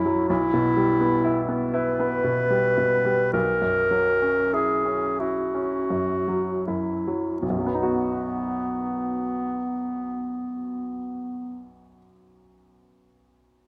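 A clear, up-front clarinet and a bright, brilliant baby grand piano open together in this tender, serene romantic duo, its 6/8 feel pushed and pulled with rubato and slowing over the first 7.4 seconds as the harmony moves from Em/B to F#7/B and settles on B. The clarinet sings the melody in a close, detailed classical solo voice while the piano accompanies from its low and middle registers, both wrapped in a moderate concert hall reverb. The clarinet ends at 11.7 seconds, leaving the piano to ring on alone until 13.7 seconds in this fragment of a longer piece.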